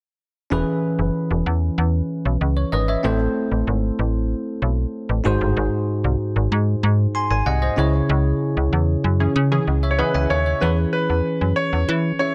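Glossy and romantic, this short pop cut from a longer piece moves at 95 BPM in a straight 4/4 feel in E major, with chords running from E6 through Am, G#7 and C#m before returning to E6. A bell-like tine electric piano carries the accompaniment from the start, bright and clean under a lush chorus, while a slap-like FM bass sits up front with a snappy, metallic attack that decays. Around 9.2 seconds a funky polysynth comp drops in brief stabs, its detuned sawtooth and square tones shaped by a filter pluck and softened by chorus. The band lands an accent from 8.1 to 10.6 seconds, and a clear concert grand piano takes the melody from 9.9 seconds in a narrow upper range, polished and present with a touch of delay. Light digital reverb adds a glossy sheen to the whole mix as the passage turns into a new section.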